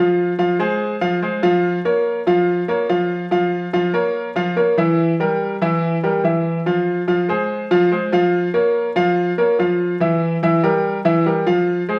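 A brilliant, intimate baby grand piano plays alone throughout this danceable, sultry Latin passage cut from a longer piece, its audible action noise and long sustain sitting up front in a moderate large-studio reverb as it cycles through Fm, Bbm and Edim chords, captured live in one room.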